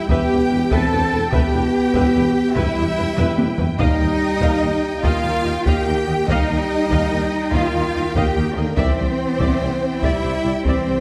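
A rolling 12/8 pulse at 96 BPM is driven by a hard-stick taiko ensemble, which breaks into a fill at 3.2 seconds, in this triumphant, adventurous fragment of an epic orchestral film score moving from Em through Ebadd9 to Cadd9. Up front, an expressive cello section carries the bass with vibrato and portamento, joined by a lush double bass section and a mellow solo tuba in the background, while a dark French horn section holds soft-attacked sustained chords. Above them, a close, warm violin section sings a second line, a smooth viola section fills in accompaniment, and a distant, bright violin section holds the melody on G5, all bathed in a wet scoring-stage reverb.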